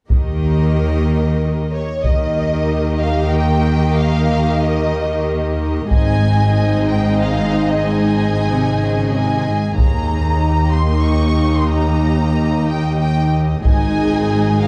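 Cinematic, epic orchestral film score in a steady 3/4, triumphant and heroic, cut from a longer piece and set in a dark, moderate concert hall reverb. Lush bowed strings carry it throughout: a rich studio violin section holds a smooth second line, a close, focused viola section fills the accompaniment, and a rich, smooth cello section and woody double basses anchor the low end, while a distant taiko ensemble struck with hard sticks booms through a large room. At 1.7 seconds a symphonic violin section enters with the vibrato-laden melody, its smooth top soaring over chords that move between Eb and Ab.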